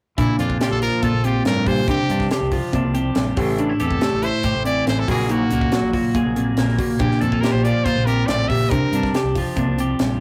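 A brilliant, forceful trumpet carries the scooped, vibrato-laden melody until 9.1 s in this intricate, wistful math rock and midwest emo excerpt, set over a twangy, compressed twelve-string electric guitar soaked in spring reverb, bell-like tine electric piano arpeggios, a growling overdriven fingered bass and a crisp fusion drum kit with a high-tuned snare and punchy kick, all caught in a rough, saturated rehearsal-room recording.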